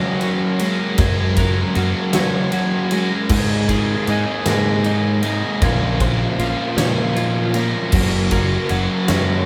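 This cinematic, cathartic post-rock excerpt opens at 0.0 seconds with the full band sounding together: an up-front, double-tracked overdriven electric guitar playing a riff, a bright, direct picked electric bass, a clean, compressed twelve-string electric guitar arpeggiating through tremolo in the background, and a mellow, airy glockenspiel struck with rubber mallets, its bell-like arpeggios ringing high above. A big rock drum kit joins at 0.2 seconds, its natural, big-room sound carried by a tight kick, a medium-tuned snare, and crash and ride cymbals with a bright edge. The tempo is a slow 52 beats per minute counted in dotted quarters, in a straight 6/8 feel. The harmony moves from Gbadd9 to Absus2, then Bbmadd9, and returns to Gbadd9, giving the open chords a suspended, yearning quality. Moderate studio reverb places the players together in one room, and the overdriven guitar carries a warm, saturated weight at the front of the mix until the passage cuts off at 9.5 seconds.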